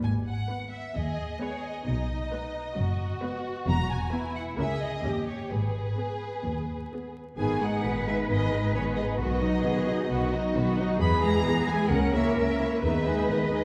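An urgent, restless classical passage in G# minor at 132 BPM opens with a focused violin section carrying the melody over smooth violas, distant bowed cellos and an up-front, soft-attacked double bass section, a second expressive violin line joins at 1.0 s, and a French horn section adds sustained chords in the background from 7.4 s, all set back in a wet concert hall with vinyl crackle.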